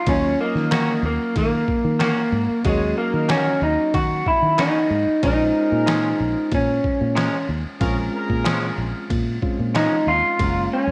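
An echo-chamber reverb washes over this mournful, soulful straight-eighth soul blues excerpt in Bb minor at 93 BPM, where a slightly broken-up lead guitar through a small old amp carries the melody up front over a reedy electric piano with fast tremolo, distant horn chords, a round foam-muted fingered bass, a gritty pitched-down trip hop sampler-style kit with thumpy kick, snare and ride, and twangy clean guitar stabs with slapback echo, moving from Ebm7 to Bbm7 at 5.2 seconds and reaching Gbmaj7 at 10.4 seconds.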